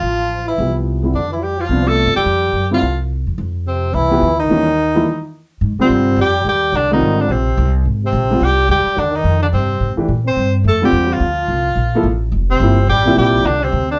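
Modal jazz at a brisk 215 BPM with a swung, open and spiritual feel, moving from F lydian to Ab lydian at 5.6 s after a short break, as a clear tenor saxophone with light vibrato and scooped notes carries the melody over a plunger-muted, wah-wah trombone second line, woody pizzicato upright bass, and an intimate grand piano whose action noise is audible, entering at 0.6 s, all set in a wet studio ambience heard from further back in the room in this cut from a longer piece.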